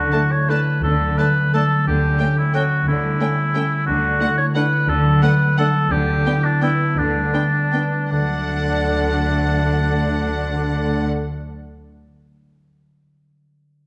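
A solo oboe sits up front in this elegant, festive orchestral ballroom waltz, carrying a second line with a light vibrato and a roomy, classical tone. Alongside it, a mellow concert harp rings out fingerpicked arpeggios, while a violin section sings the melody from a distance, focused and vibrato-rich, and a second violin section adds a lush, smooth-topped line in the background. Violas supply an even accompaniment, and a symphonic cello section and an expressive double bass section hold down the bass, all bowed ensemble playing. In D major and 3/4, the tempo moves freely between 149 and 192 BPM with rubato. The harmony passes through A7 and G over a D bass before settling back on D, and the music slows down from 5.4 to 8.1 seconds. A reverberant scoring-stage ambience and a dark, warm production give this fragment of a longer piece its glow.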